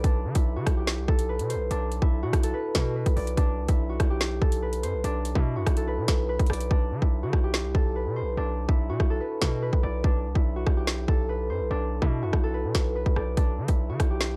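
A distorted 808-style bass anchors this ominous, tense drill excerpt, its heavy, saturated sine tone carrying a noise layer, a fast attack and a decaying tail up front at 144 BPM in a half-time feel in B phrygian. Above it, a fingerpicked concert harp plays a warm, ringing, filtered melody, while the electronic drum kit pairs a hard-clipped kick and woody snare with rim clicks and metallic hi-hats that drop out from 6.7 to 13.4 seconds. The whole take has a dry, gritty, cassette-tape character under a digital ambience, cut from a longer piece.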